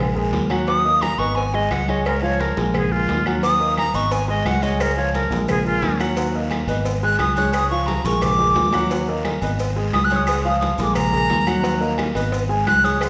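A passionate, danceable salsa groove in Eb minor at 175 BPM opens with a dark, worn baby grand piano, a round and punchy fingered electric bass up front, and bright, hard-handed congas in the background. Within the first second the cowbell, ringing timbales and agogo bells, raspy guiro and woody claves join. The airy silver concert flute then enters at 0.7 seconds and carries the melody throughout, up front, close-miked and reedy, with vibrato and tongued notes. The harmony cycles through Ebm, Abm, Db and Bb, turning to Bb7 midway through a drum fill that runs from 7.9 to 8.9 seconds, while grainy, distant maracas slip in at 3.4 seconds. The whole excerpt sits in a wet recital hall reverb, and the piano's long sustain and mellow tone give the bright flute a shadowy bed beneath it.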